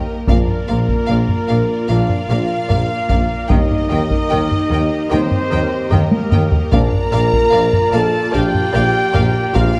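Heavy-sticked taiko drums sit up front in this heroic, majestic orchestral film-score excerpt in Bb major at 74 BPM, with a drum fill at 5.9 seconds as the harmony moves from Bb to Eb and back to Bb. A rich, vibrato-laden violin section carries the melody over a focused, more distant second violin line, lush violas and cellos, and bowed double basses. An intense string section, mellow French horns and smooth-topped trombones hold sustained chords, clear trumpets punch out stabs and a soft-attacked tuba anchors the bass, all set in a dark production with moderate scoring-stage reverb.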